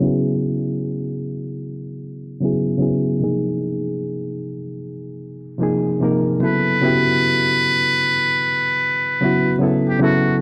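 Swung sixteenths give this nostalgic, hazy hip hop fragment its loose, unhurried 4/4 lope, with a reedy, worn electric piano up front, lightly overdriven and slightly out of tune, playing the chords alone under a filter sweep until 6.4 seconds. Then a muted trumpet enters with a breathy, buzzy, intimate jazz solo line, played with a soft attack. Vinyl crackle, a low-pass filter and a moderate plate reverb lend the whole recording a vintage haze.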